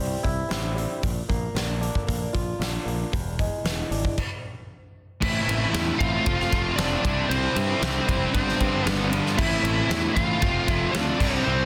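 Dense and heavily limited, this small-room recording captures a cathartic, restless stretch of quiet-loud alternative rock in straight 4/4, cut from a longer piece. It opens on a boxy, fingerpicked acoustic guitar playing swing-style arpeggios with slapback echo, over a growling, overdriven bass with a bright, direct-and-amped tone and a huge arena drum kit whose fat snare and punchy kick sit up front in a big, natural room sound. The acoustic guitar stops at 4.2 seconds, and a brief stop follows before the heavier section arrives at 5.2 seconds. From there a high-gain lead guitar carries the melody up front, soaked in distortion and slapback echo. Beneath it, a double-tracked crunchy overdriven guitar and two fuzz guitars churn out the riff, one fuzz part dark and very quiet and the other bright in the background. The chords move from C through Bb to E7 in the opening, then cycle through Am, F, C and G7sus4 in the louder stretch.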